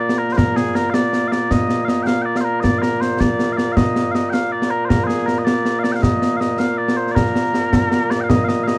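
Mellow, sweet small bagpipes open this ceremonial, stirring Scottish pipe tune in 6/8 at 106 BPM in Bb major, carrying an up-front, continuous melody with vibrato from Bb2 to G5, joined at 0.1 seconds by a concert snare drum and concert bass drum with bright cymbals in a small acoustic room, all in a dark, dry production cut from a longer piece.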